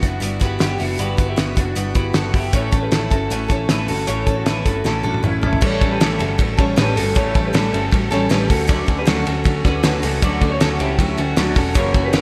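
Jangly indie pop with a nostalgic, breezy mood, cut from a longer piece: a warm, up-front picked steel-string acoustic guitar carries the accompaniment while an electric guitar through a small old amp plays bright, twangy, slightly broken-up arpeggios colored by analog chorus, analog delay and slapback echo. Underneath, a vintage foam-muted picked electric bass sits round and punchy, and a cloth-damped, thuddy drum kit with a fat snare, tight kick and dark cymbals sits up front, its fill at 4.8 seconds leading into the second section at 5.6 seconds. A lush hall reverb gives the mix a big arena sound as the chords move from Emadd9 through A and A7 to Dmaj7.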